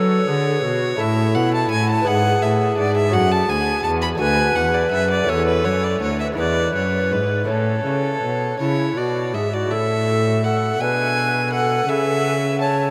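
Classical baroque-style sonata movement in a flowing, introspective 6/8, cut from a longer piece, in which an airy, wooden tenor recorder with a tongued chiff carries the melody over a gut-string violin second line with light vibrato, a dark, reedy cello bass up front and a delicate, fingerpicked lute in the background, the ensemble set in a vast, echoing space by a huge, wet reverb.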